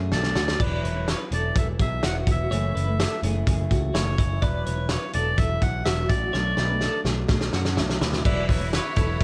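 Nostalgic and youthful, this excerpt of jangly indie pop moves at 126 BPM in E mixolydian, with a reedy, breathy melodica carrying the melody over a woody, fingerpicked steel-string acoustic guitar and a bright, twangy twelve-string electric guitar playing tremolo-washed arpeggios in the background. A round, punchy picked electric bass and an up-front, gritty indie drum kit with a fat snare and dark cymbals drive the chords, with drum fills at the opening and from 6.3 seconds. Near the end, a lush, bowed violin section enters softly at 8.2 seconds, followed by a buzzy vintage combo organ with spring reverb, all within a light reverb.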